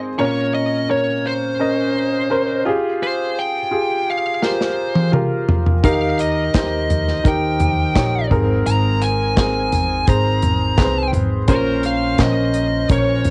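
A fuzzy, compressed electric lead guitar carries the melody from 0.2 seconds in this hopeful, uplifting piano-driven pop excerpt at 85 BPM in Ab major. It sits over an intimate concert grand with deep bass, long sustain and audible action noise, while the chords move through Bbmadd9, Fmadd9, Eb and Abadd9. A dark, smooth acoustic drum kit with a tight kick, handclaps and toms enters with a fill at 4.4 seconds, and a woody pizzicato upright bass joins at 5.8 seconds. Cassette tape coloring on the guitar, piano and drums and light reverb give it a homespun, home-recorded feel.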